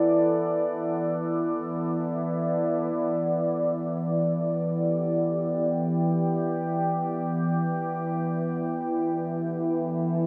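A deep, wet wash of studio reverb with a long 7.6-second decay surrounds this short ambient excerpt, cut from a longer piece and tuned to A4 = 443 Hz. In free time and E minor, the mood is reflective and melancholic. Up front, an evolving wavetable pad holds sustained chords from E3 to F#5. Its dark, detuned sine tone morphs and warbles with a vintage character, shaped by slow attacks, long releases, a phaser and its own built-in reverb. Beneath it, an analog drone sits lower in the mix between E3 and B3, a mellow, nasal blend of sawtooth and pulse waves with pulse-width modulation and a chorus sheen. The harmony drifts from Bm7/E to Em7 at 2.9 seconds, then settles on G69/E at 8.6 seconds.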